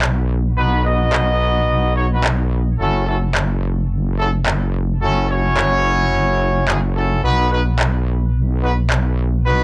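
A heavy, saturated wobble bass with a sawtooth bite and a chorus sheen opens this gritty, funky glitch hop fragment alongside up-front, tape-warm electronic handclaps, the groove swung on the sixteenths. At 0.6 s a clear, roomy horn section joins with pop-style stabs, roughened by vintage 12-bit sampler grit, darkened by a low-pass filter and trailed by analog delay, over a progression that moves from B to F#m7 and back to B. The handclaps drop out at 9.0 s, and the dry, gritty hardware recording carries little reverb throughout.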